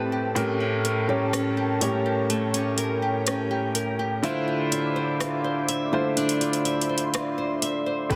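A slow, straight 4/4 groove arrives at 0.4 seconds on an electronic, produced R&B kit of metallic hi-hats, rim clicks and a knocking kick that is overdriven and softly clipped, sitting up front, until the kick falls silent at 4.2 seconds. This contemporary R&B excerpt feels longing and sensual, moving from A7b9 to Dm9 within what plays as a break. A baby grand piano with long sustain carries the accompaniment up front, while a bright flamenco guitar with fresh strings spins fingerpicked arpeggios. Behind them, an ethereal, airy pad holds mellow sustained chords with slow attack, ensemble chorus and its own reverb, and a fat, detuned analog bass with a sawtooth edge sits very quiet beneath. The mix has light reverb and a dense, heavily limited modern master.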